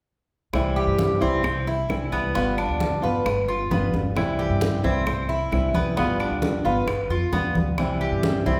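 Latin Cuban son in a guajira vein, this sunny, danceable excerpt from a longer piece moves between C and G7, with a fingerpicked flamenco guitar on fresh strings and a metallic, double-strung Cuban tres up front, the tres entering at 0.8 s with picked arpeggios. Beneath them, a dark, thumpy upright bass with gut strings plays pizzicato, while tight, high-tuned bongos struck with hard hands, bright thin-skinned congas and woody claves sit in the background. A wet recital-hall reverb gives the whole a spacious, church-like glow.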